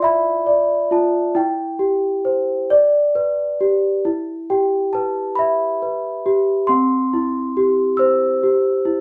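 Children's music with a sleepy, innocent mood, this short cut from a longer piece features a solo celesta, bell-like and delicate with medium felt hammers, sitting up front in a moderate studio reverb as it drifts through a rubato 6/8 at 45 BPM in C major, moving from Dmadd9 to C, G and G6 before settling back on C at 6.7 seconds.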